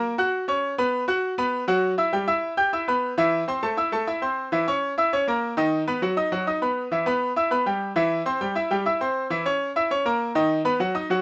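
A straight, driving 4/4 Latin groove carries this danceable short passage from a longer piece, played by a solo grand piano whose brilliant, polished, up-front tone and short sustain ring through a moderate studio reverb as the harmony moves through E minor, A minor, C-sharp minor six-nine and B, then E minor, C, C-sharp minor six-nine and B, after a brief opening on F-sharp and B5.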